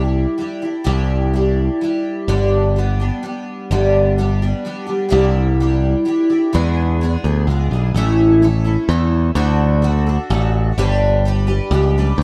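Folk rock with a heartland rock lean, this short cut from a longer piece carries a nostalgic, warm mood in 3/4 metre with a straight feel. A picked twelve-string acoustic guitar plays the accompaniment throughout, its jumbo body giving a full, shimmering, octave-doubled tone touched by a subtle chorus, with audible finger squeak marking it as a close, up-front performance. Beneath it, a modern picked electric bass sounds bright, direct and punchy, sitting slightly louder than the guitar in the mix. The harmony moves from Cadd9 to G, back to Cadd9 and on to E7, then shifts at 8.0 seconds to a new passage running A, D and G. The sound is dry, with little reverb, and has the rough, unpolished character of a home demo.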